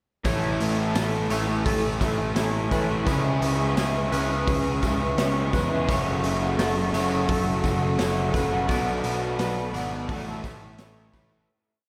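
A shoegaze and dream pop piece in a rock vein, this short, dreamy and wistful track moves at an unhurried, straight four-beat pace through a progression that opens on a major seventh chord and drifts through minor sevenths before settling home. Three guitars build a thick wall of strummed chords in the background: a dark fuzz guitar with distortion and ensemble chorus, an overdriven lo-fi garage guitar washed in reverse reverb, and a brighter, double-tracked overdriven garage guitar whose ringing chords shimmer through analog chorus. Above them, a clean, bright semi-hollow guitar repeats a picked arpeggio ostinato through analog chorus and delay, while a deep, moody analog pad with a slow attack and sub octave enters at 1.1 seconds to hold sustained chords. Underneath, a growly, punchy picked bass drives steady eighth notes, and a gritty, saturated garage drum kit with a punchy kick and rolled-off top pumps in its small room, joined by a very quiet, jingly tambourine. 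The whole mix is soaked in a lush hall reverb, and the piece fades out from 8.7 seconds to its end at 11.5 seconds.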